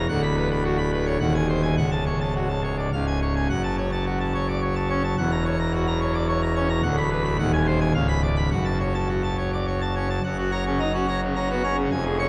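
A cavernous cathedral reverb with a 5.5-second decay surrounds this short cut from a longer piece, placing a full pipe organ up front in a vast, echoing space. It is a classical organ toccata in F# minor at 107 BPM in 3/4 time, with a straight feel and a majestic, stormy mood. The solo organ plays with its mixtures drawn, giving a brilliant, baroque-voiced sound with a distinct chiff, and it spans from C#1 up to C#6. The harmony circles through dark, dramatic chords, including a pungent C#7b9 at 7.9 seconds, before the music settles on a bright F# major chord at 10.2 seconds. The organ keeps sounding until 12.3 seconds, enveloped by the cathedral's long echo.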